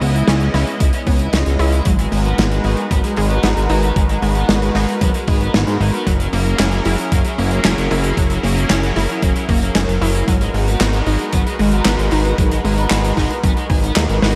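A fat, detuned sawtooth bass sits up front in this moody, cinematic synthwave piece, pumping to a sidechain between F#1 and G#2 at 114 BPM in a straight 4/4 feel. The key is G# minor, tuned to A4 = 436 Hz, and the harmony moves through C#m7, G#m7 at 1.9 seconds, F#7 at 6.1 seconds and back to G#m7. A lush, airy unison pad holds sustained chords with a slow attack, a noise layer, chorus, phaser and pumping of its own. Behind it, a round analog pluck plays arpeggios through chorus and delay, and a double-tracked overdriven electric guitar picks a riff in the background with lush chorus and delay. A loose acoustic indie kit of handclaps, hi-hat and a medium-tuned snare plays alongside a thumpy, tape-warm electronic kick that enters at 0.8 seconds. The bright 1980s-style digital production is bathed in a moderate hall reverb, and the passage is cut from a longer piece.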